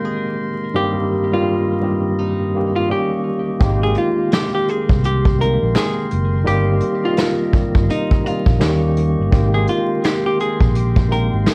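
This dreamy, nostalgic lo-fi hip hop piece opens with a dark, clean hollow-body archtop guitar picking the melody through tape echo, over a slightly out-of-tune, lightly overdriven tine electric piano heard through its built-in speakers, while a distant, roomy woodwind section holds sustained chords behind them. At 3.6 seconds a round, amped fingered electric bass and a vintage brush kit with a punchy kick and rolled-off top join up front in a swung groove, and very quiet, close finger snaps come in at 4.3 seconds. The whole mix carries the worn, warbling character of old cassette tape, with vinyl crackle and light reverb, as the chords cycle through Abmaj9, Cm7/G and Eb7.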